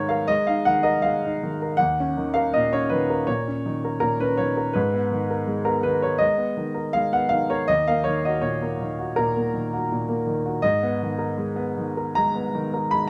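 A smooth, vintage grand piano sits up front in a light reverb, its tone close and present across this short 13.1-second section cut from a longer piece. The style is neoclassical minimalist piano, reflective and melancholic in mood, unfolding in 4/4 with a freely breathing rubato feel. The solo piano plays for the full length, spanning from Eb2 up to Cb6. The harmony circles around an Abmadd9 chord, moving to Eb5 and Ebm7 before returning to Abmadd9 each time. Tuned to A4 = 437 Hz, the instrument carries a warm, slightly aged character that suits the reflective, melancholic mood.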